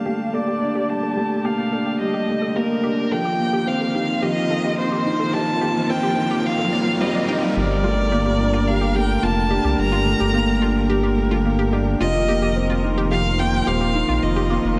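A dreamy mix drenched in plate reverb gives this cut from a longer piece of piano and strings electronica a hypnotic, cinematic haze, moving at 108 BPM in a straight 4/4 in G minor over chords of Gmadd9 and F7sus4. A felt-muted upright piano carries the riff with a soft, boxy, intimate tone, while a con sordino string quartet holds veiled, bowed chords beneath it. An up-front violin sings the melody with rich vibrato and portamento, its distant tone shaped by a low-pass filter and a diffuse ambient delay. A round analog pluck with chorus and ring modulation ripples through arpeggios in the background. During the build-up, both the pluck and the violin carry filter sweeps, and an electronic riser starting at 1.0 seconds is joined by a swell. At the drop at 7.6 seconds, a rumbling, detuned saw bass enters up front with a deep, beating low end.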